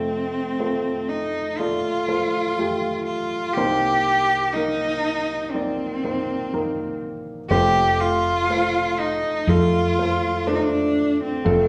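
A rich, bowed cello with vibrato carries the melody of this intimate, melancholic acoustic folk-pop ballad at a slow 61 BPM, over an upright piano whose audible action noise lends closeness, before a round, dark fretless electric bass enters at 7.5 seconds, all set in a recital-hall reverb as the chords move from F to Cm7 and back to F.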